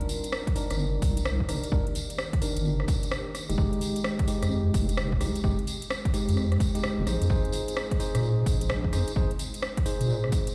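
UK garage in a two-step mould, bouncy and moody at 129 BPM in C minor, with a swung 16th feel moving through Cm7, Fm9 and Bb9sus4. A deep, dark wobble bass with chorus sits up front beside a punchy overdriven kick that enters at 0.5 seconds, while the overdriven house kit brings metallic hats and rim clicks and a jingly, warm, band-limited tambourine joins in. Bell-like tine electric piano stabs run through a filter sweep and tape echo over a very quiet, ethereal pad, and the whole excerpt sounds as if played on a big system in a bare stone room.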